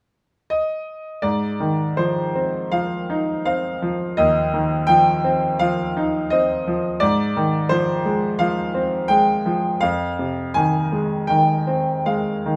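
The rhythm breathes freely in four, its uneven beats pushed and pulled by rubato, and the tempo is never quite held steady. This is a lyrical classical solo piano excerpt, cut from a longer piece, and its mood is moody and brooding. A bright grand piano enters at 0.5 seconds and carries everything alone until 12.6 seconds, ranging from Eb2 up to Ab5 with a brilliant yet worn, open tone, short sustain and an up-front presence. The harmony settles on Ab6, then darkens into Fm7 over an Ab bass before resting on Fm7. A wet studio reverb places the listener further back in the room.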